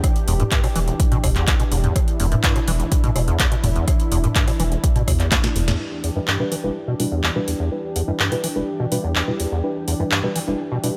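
A straight pulse drives this hypnotic acid house cut, cut from a longer piece. A punchy, tape-toned electronic kick anchors the groove alongside an up-front, overdriven analog drum machine with crisp snare, metallic hats, handclaps, rim clicks and toms, all re-recorded in a small room. Underneath, a rubbery, resonant acid bass riff with a filter pluck and tube saturation works beside a round, sustained analog bass that pumps against the kick, while a smooth, detuned sawtooth pad holds an Em7 chord throughout with chorus and the same pumping motion. Around a drum fill and a band accent, the kick and round bass drop away, and at 5.8 seconds mellow, warm chord stabs with chorus, analog delay and a filter sweep enter. Light digital reverb gives the driving mix a touch of space.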